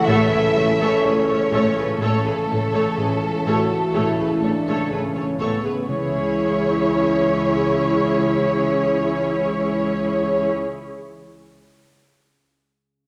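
Eerie and uneasy, this slow 62 BPM suspense film cue in C# minor opens on an A chord, with a lush, expressive violin melody over a focused violin second line, smooth bowed violas, and sustained chords from warm French horns and tight, close-miked trombones. Beneath them sit a cello riff, a background cello bass line, double basses, a detuned organ-like drone on C#2 carrying its own chorus and reverb, and a barely audible ringing harp. Very quiet taiko drums sound from 1.5 to 2.5 seconds, and at 5.9 seconds the harmony moves to C# minor as round, dry timpani enter, all set in a spacious scoring-stage reverb.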